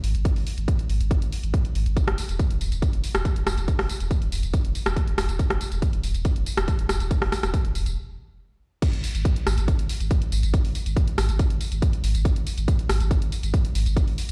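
Driving peak-time techno, dark and intense, cut from a longer piece: a heavy, layered electronic kick sits up front over a deep, thick triangle sub bass with tube saturation, sidechain pumping and a low-pass filter, while an overdriven analog drum machine supplies crash cymbal, hi-hat, rim click and tambourine with pumping on the hats, percussion and cymbals. The music halts in a stop from 8.0 to 8.8 seconds before the drop hits at 8.8 seconds. The mix sounds as if played on a big sound system in a bare room, bathed in large studio reverb.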